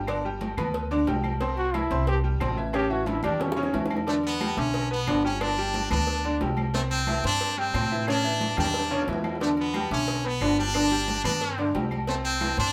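Over a straight, danceable salsa groove of soft-handed congas, tight high-tuned cowbell and bongos, ringing distant agogo bells and timbales, and very quiet woody claves, a slightly detuned upright piano with audible action noise and a growly pizzicato upright bass carry this sunny snippet while a close-miked trombone takes a punchy vibrato solo from 1.6 seconds before a brilliant, forceful trumpet leads from 4.1 seconds to the end, all in a small, lively room.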